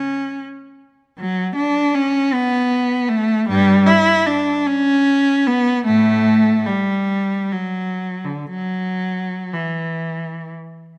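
A rich, bowed solo cello plays alone from 0.0 to 10.5 seconds in this lyrical, serene classical fragment, its smooth, even vibrato tone sitting up front in close, detailed focus within a moderate scoring-stage reverb, moving freely in rubato 3/4 at 48-84 BPM and spanning G2 to E4 with a slightly low tuning of A4 = 439 Hz.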